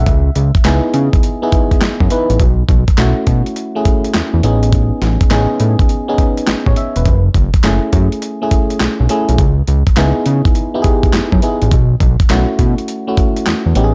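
A swung 16th-note groove at 103 BPM drives this confident, bouncy new jack swing clip, where a gritty, overdriven sampler-style kit of thumpy kick, medium-tuned snare, hi-hat and handclaps sits up front beside a fat, detuned analog bass with a sawtooth-and-square filter pluck, while a glassy, bell-like FM electric piano with a warbling chorus moves through C#m7, B7sus4, Amaj9#11 and F#m7 in a dark production with digital ambience.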